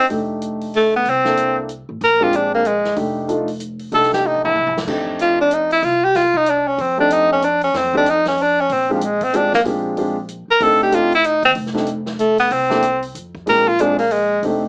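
Small-group swing and bop jazz in a relaxed, easy three-beat lilt, heard as a short cut from a longer performance. A clear tenor saxophone carries the melody up front, its subtone touched with vibrato, moving over rich thirteenth chords on F, C and Bb. A warm concert grand piano comps beneath it with a deep low register, while a woody pizzicato upright bass sits lower in the mix. An open acoustic drum kit with dark cymbals, a medium-tuned snare and a boomy kick plays quietly behind the band and breaks into a short fill between 4.2 and 4.9 seconds before the tune's phrase starts again. A moderate club reverb gives the group an intimate room feel, though the whole recording has a small-speaker character.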